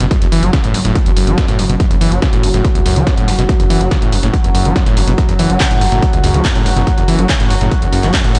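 Light reverb and a digital ambience surround this short cut from a longer piece of intense, driving peak-time techno at 142 BPM in F# minor, built on an F#5 chord. A heavy, layered electronic kick arrives at 0.1 s alongside a thick, detuned saw bass pumping under sidechain, while an up-front, squelchy, distorted acid riff with a resonant filter sweep trails a diffuse delay and an evolving, warbling analog drone adds chorus-tinged vintage colour. A punchy analog drum machine supplies handclaps and hi-hat, and a dusty sampler-style kit with a fat snare and filtered hats sits in the background, re-recorded in a large room.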